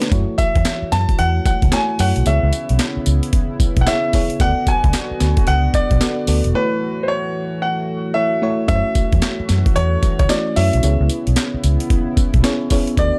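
A gritty, compressed breakbeat sampler-style drum kit with a thumpy kick, high-tuned snare, handclaps, hi-hat and tambourine drives this bouncy, confident new jack swing R&B excerpt in F# minor at 112 BPM with a 63% sixteenth-note swing, alongside a round, foam-muted electric bass, an intimate grand piano melody with audible action noise, a warbling FM electric piano and a shimmering chorused pulse-width pad over F#m7, C#m7 and D6 chords, all set in a dark production with light reverb and a break from 6.5 to 8.7 seconds.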